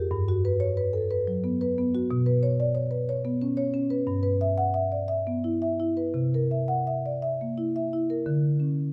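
In a rubato 6/8 lilt of roughly 56-61 dotted-quarter beats per minute, this brief, playful contemporary classical excerpt for solo marimba, tuned to A4 = 439 Hz, has soft mallets drawing a woody, round, mellow tone from the rosewood bars across a range from G2 to F#5, moving through Gmaj7, Bsus2, G6 and C7 over about 8.9 seconds, captured up front by close, detailed microphones with a touch of light reverb.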